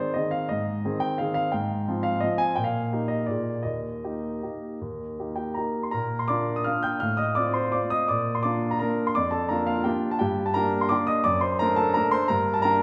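Graceful and sparkling, this short passage from a classical piano waltz moves in a lilting three with a flexible, rubato feel. A solo baby grand piano carries everything across the full 12.8 seconds, sitting up front with a natural tone and long sustain that lets each note ring. Its range stretches from the low bass to high, glinting treble notes, giving the dance both depth and shimmer. The harmony opens on an Ab chord, settles home through a Bb7 at 3.3 seconds, then shifts to a new key area at 5.9 seconds before turning toward G minor near the close. A wet recital hall reverb surrounds the instrument, adding a spacious, glowing tail to every phrase.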